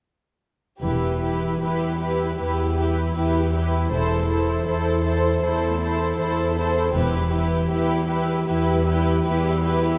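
Classical slow romantic movement for symphony orchestra at 78 BPM in E minor, melancholic and elegiac with a rubato feel, cut from a longer piece, where a floating, sul tasto violin melody sits above a darker, intimate second violin line, lush woody violas, ringing thumb-plucked harp arpeggios, up-front pure cellos and distant double basses that fall away at 7.6 s, all set in a wet scoring-stage reverb as the harmony moves from Em to Am/E at 3.9 s and back to Em.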